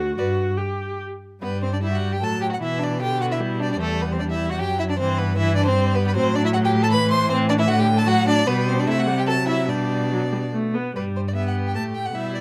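Cheerful and graceful, this quick classical-period string quartet movement in G major moves in a rubato 3/4 at 140-156 BPM, with a rich, up-front violin singing the melody over a focused second violin, a distant viola filling in accompaniment and a close cello anchoring the bass, all bowed with vibrato and caught by close, detailed microphones in light reverb, as harmonies pass through E minor and A before settling on G at 11.0 seconds in this short passage cut from a longer piece.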